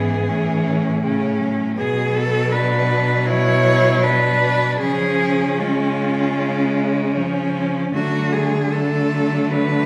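Moving in a rubato 4/4, this elegiac, solemn classical passage for cello ensemble is cut from a longer piece, its harmony shifting from A through Bmadd9 and C# to D. An expressive, up-front cello sings the melody with vibrato, portamento and a soft attack, and a close, warm-toned bowed cello holds the bass with the same sliding expressiveness. Between them, two more distant cellos share the melody's rich tone, one smooth and even on a second line and the other focused on accompaniment, while wet recital-hall reverb with a 1.5 s decay places the ensemble in a church or concert hall.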